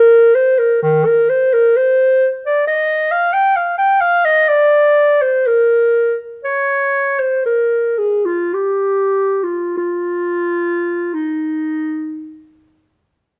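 Serene and lyrical, this classical fragment cut from a longer piece features a mellow, distant, roomy solo clarinet that sits up front and unfolds freely in rubato 3/4 at 34-68 BPM in Eb major (tuned to A4 = 439 Hz), ranging from Eb3 to G5 between 0.0 and 12.5 seconds, with light reverb and the worn, warbling pitch drift of old cassette tape.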